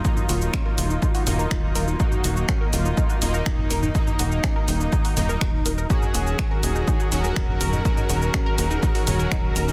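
A dense, heavily limited modern mix with light reverb opens this dark, driving melodic techno fragment in Eb minor, cut from a longer piece and moving at 123 BPM in a straight 4/4. A punchy, tape-toned electronic kick sits up front, joined by a layered house kit of finger snaps, warm hats, shaker and toms, with the kit's hats, percussion and toms pumping to the sidechain. A tight sequencer bass holding Eb1 enters at 0.3 seconds with a fast, decaying sawtooth-and-square pluck edged by ring modulation, while a detuned sequenced synth sits in the background with arpeggios shimmering through chorus, phaser and dub echo. On top, a thick, bold unison lead carries the melody with a warbling, vintage, nasal character, vibrato and a sub octave, and an edgy, bright sync-sweep polysynth stabs chords through chorus and dub echo. Behind them a studio string section holds smooth, expressive bowed chords with portamento as the harmony shifts from Ebm to Gbadd9/Eb at 5.9 seconds.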